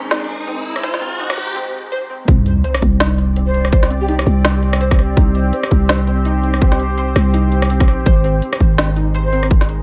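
Half-time drum and bass with a dark, cinematic mood, opening on a short build-up where a riser and sub drop, a filter sweep and a brief break lead into the drop at 2.3 seconds. A deep, moody pad with a slow attack and long release holds sustained chords under sidechain pumping, while a warbly, dusty lo-fi pluck plays arpeggios in the background with dub echo, and a growling, buzzy 808-style bass sits up front. The overdriven drums pair a hard-clipped electronic kick, entering at 0.8 seconds, with a kit of woody snare, crisp hats and rim clicks, and an airy, mellow jazz flute drifts in through dub echo for a brief phrase at 3.5 seconds.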